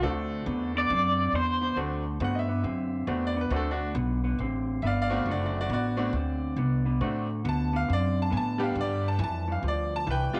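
A raw, overdriven garage guitar opens with a brief, up-front solo with tremolo that ends at 1.8 seconds, over a rollicking, laid-back electric blues shuffle at 137 BPM in D mixolydian, where a brilliant, polished upright piano, a dark, slightly broken-up electric guitar riff through a small old amp and a woody pizzicato upright bass carry on in a small room, moving from D7 to G7 at 8.8 seconds in this cut from a longer piece.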